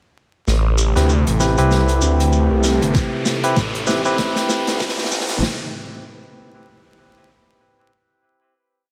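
This short glitch hop piece is funky and playful, running at 97 BPM with a swung sixteenth-note feel in A minor and sitting on an Am7 chord. At 0.5 seconds a swirling, thick detuned saw bass with phaser arrives up front, alongside a mellow analog pad with chorus and sidechain pumping in the background, an airy, polished big-band kit playing a swung beat with edits on rim, closed hat and medium-tuned snare, and a grainy, vintage shekere shaking hand-played sixteenths. A barky, clean tine electric piano soon adds syncopated, rootless chord stabs, treated with delay and sidechain pumping. A riser enters at 2.0 seconds, and at 2.9 seconds an overdriven, knocking electronic kick joins with a broken pattern. The whole piece works as a build-up with a drum fill and a filter sweep running throughout, set in light reverb under a layer of vinyl crackle.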